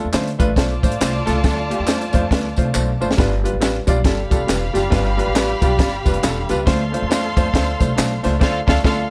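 Uptempo 1960s-style soul with a driving, passionate feel and a swung groove, cut from a longer piece and moving from Dm7 to G7 and back. An up-front, dry cocktail kit with a punchy kick, high-tuned snare and dark cymbals sits alongside a woody, thumpy gut-string upright bass and an intimate baby grand piano whose action noise can be heard, while handclaps, tambourine and egg shaker stay in the background. A distant bowed violin section enters at 0.6 seconds with vibrato, portamento and tape echo, a drum fill arrives at 2.7 seconds, and the band lands a closing accent at 8.4 seconds, all within light small-room ambience.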